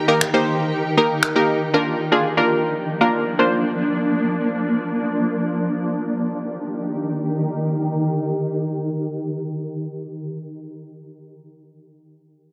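A punchy, sawtooth chord stab with a bright filter pluck enters just after the opening pad in this summery, euphoric dance-pop excerpt at 118 BPM in Eb major, sounding up front before it stops at 3.6 seconds, while overdriven electronic finger snaps, layered and re-recorded in a small room, appear only briefly near the start. Alongside them, a shimmering, ethereal pad of detuned unison triangle voices with an octave-up shimmer and granular, evolving texture holds sustained chords throughout, moving from Eb to Bb and back to Eb at 5.8 seconds as a filter sweep gives way to a new section. The mix has a moderate plate reverb and a heavily compressed, radio-like sound.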